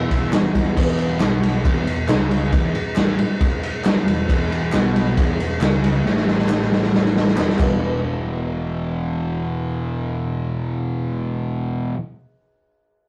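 A raw garage drum kit sits up front with a punchy kick, a medium-tuned snare and a dark, rolled-off top, driving this swaggering, rowdy garage rock clip in straight 4/4 and rolling into a fill at 6.1 seconds before dropping out at 7.7 seconds. A double-tracked, distorted fuzz guitar riff opens on an E5 chord, and a round, overdriven fingered bass rumbles in the background, with crisp group handclaps adding to the din until 8 seconds. The pair carry on into a new section until about 12 seconds, all captured in a rough rehearsal-room sound with tube saturation, cassette tape and a moderate studio reverb.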